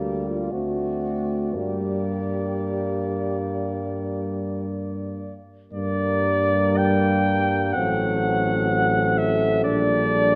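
Classical and hymn-like, this brass band passage in G minor moves at a slow, rubato pace of 56-64 BPM in 4/4, carrying a solemn, elegiac mood across its 10.4 seconds, cut from a longer piece. A flugelhorn sits up front with the melody, its soft attack and light vibrato giving it a vintage glow, while a tight French horn section shapes a second line beneath it. Euphonium and trombone supply the accompaniment from a distance, both sounding roomy, with the trombone held in the background and touched by light vibrato. A mellow tuba anchors the bass up front, also with a light vibrato. The harmony opens on Gm/D and D7, settles on Gm, then darkens through F#dim/A at 7.8 seconds before landing on Gm/Bb, with a concert hall reverb of moderate size lending the ensemble a spacious, dignified bloom.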